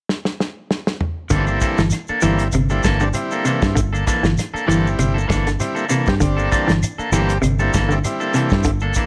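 Afrobeat with a driving, hypnotic feel, cut from a longer piece, opening on a drum fill from a damped 70s kit whose dry, medium-tuned snare, tight kick, toms and rolled-off top sit up front. At 1.3 seconds the band drops onto a Gm69 groove: a round, foam-muted fingered bass holds the low end, a dark clean guitar plays arpeggios, a twangy, slightly broken-up guitar with harmonic tremolo hits stabs, and a buzzy vintage combo organ with light vibrato fills in the accompaniment. A grainy shekere and very quiet woody claves add close, dry percussion, all in a light studio reverb.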